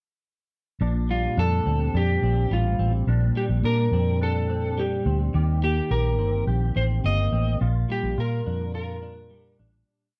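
Nostalgic and sunny, this short indie pop and bedroom pop piece moves at 106 BPM in a straight 4/4, settled in Bb major. A clean electric guitar carries the accompaniment with a twangy, compressed fingerpicked roll pattern, its tone colored by an ensemble chorus and a warbly pitch drift. Underneath, a vintage muted fingered electric bass sits up front with a dark, round, foam-muted sound, playing a melodic bass line with slides. From 1.1 seconds an electric slide guitar takes the melody, slightly broken-up and warm, shaping motif-based sentence phrases with subtle chorus and slapback echo. The harmony moves from Bb69 to Eb6 and then Bb6, and the whole piece fades out from 7.6 to 9.9 seconds, captured as a dry, close 1970s-style studio recording.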